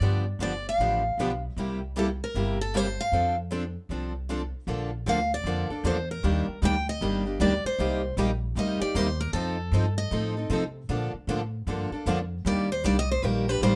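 Lightly reverberant, close-sounding acoustic string swing at a lively, charming 154 BPM, where a bright, up-front picked steel-string guitar carries the melody and takes a solo from 4.7 seconds as the key moves from F major to Bb major, two picked steel-string guitars with fresh strings and a touch of finger squeak fill in the accompaniment, and a woody, thumpy pizzicato upright bass sits prominently underneath through jazzy seventh chords.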